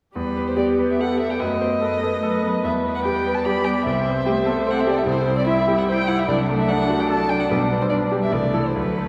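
A stormy, dramatic classical-period movement for piano quartet at a quick 147 BPM in 3/4 with a rubato feel, opening in E minor and turning to G major at 5.1 s, in which a veiled, con sordino violin sings the melody up front with vibrato over a muted cello's second line with portamento, a soft-edged muted viola, and a brilliant concert grand with deep bass, all bathed in wet church reverb in this short cut from a longer piece.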